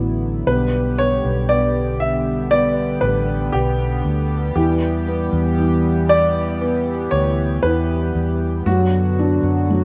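A bright, brilliant baby grand piano carries the melody from 0.5 seconds in this slow, longing and melancholic pop excerpt at 58 BPM, set over a soft, felt-muted upright piano with audible action noise, a shimmering, retro chorused pulse-width pad holding sustained chords, and a dark, round, punchy hollow-body short-scale electric bass, all in a rough home demo mix with light reverb and studio ambience as the chords move from G/B to Em to Bm/F#.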